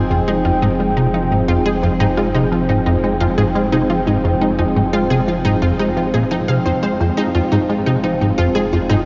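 A sweeping, resonant pad sits up front, holding sustained Fm7 chords with a slow, detuned sawtooth swell and a chorus sheen across this short 9-second cut from a longer piece of ambient, sequencer-driven space music. Beneath it, a punchy, funky analog bass plays an evolving riff with a fast attack and decaying filter pluck, touched with subtle chorus and delay. A lush, full-bodied unison pluck traces arpeggios higher up, its detuned sawtooth layers roughened by vintage 12-bit sampler grit and trailed by delay. A deep, round sine sub bass holds a low F underneath, mellow and steady. At 87 BPM in a straight 4/4 in F minor, the mood is cosmic and mysterious, and the dreamy mix is soaked in a huge, wet reverb with an 8.0-second tail and a soft, dark top end.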